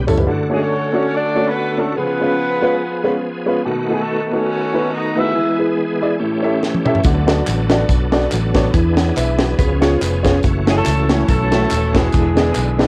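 A lightly swung 4/4 groove at 142 BPM drives this uplifting, reverent uptempo gospel excerpt, cut from a longer piece, as a woody upright piano and a shouting tonewheel organ, turning through a slow rotary speaker with chorus vibrato, carry the chords from the start while a dark, distant horn section in octave doubling sings the melody with light vibrato and analog delay. After a brief opening fill and a few quick hits from bass and percussion, a tight funk kit with a high-tuned snare returns with a fill at 6.6 s, and at 7.0 s a round, amped fingered electric bass comes back with a tambourine, egg shaker and group handclaps. A mellow, compressed electric guitar with analog chorus adds a brief second line at 9.6 s before the horns return, all colored by studio reverb and the grain of a home cassette recording.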